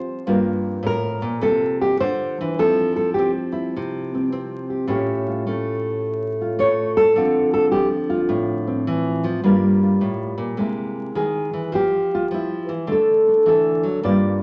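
Swung eighth notes in 4/4 loosen into a rubato feel as a lone nylon-string guitar, thumb-plucked with fresh strings and a deep classical tone, sits up front in this sophisticated, relaxed solo jazz fragment cut from a longer piece. The harmony moves through Gm7 and C7 to Fsus2, then passes A7b13, Dm9 and C7alt before settling on D at 12.9 seconds. A moderate large-studio reverb lends space, while a vinyl crackle adds a worn patina.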